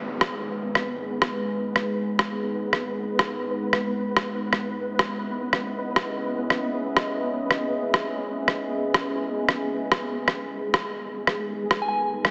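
Drenched in a lush hall reverb yet squeezed into a heavily compressed, small-speaker radio sound, this heavy, spacious half-time drum and bass excerpt sets a deep, moody, warbling detuned-sawtooth ambient pad and a mellow, pulsing gated triangle texture under a gritty, pitched-down, tape-warm electronic rim click that enters at 0.2 seconds, while a background downlifter runs through the first 1.5 seconds and a soft, pure FM synth bell with vintage 12-bit grit chimes briefly at 11.8 seconds.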